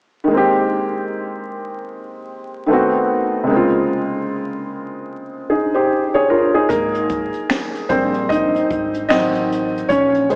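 Nostalgic and dreamy, this fragment of swung lo-fi hip hop at 75 BPM in Ab major opens with a mellow, intimate felt-muted upright piano up front, tinged with cassette tape, playing alone over Abmaj9, Adim7 and Bbm9 chords until 6.7 s, when a woody, thumpy pizzicato upright bass settles into the background and a jazz brush kit with boomy kick, high-tuned snare, hi-hat and finger snaps joins beneath a piano solo, the mix soaked in plate reverb, vinyl crackle and small-speaker sound.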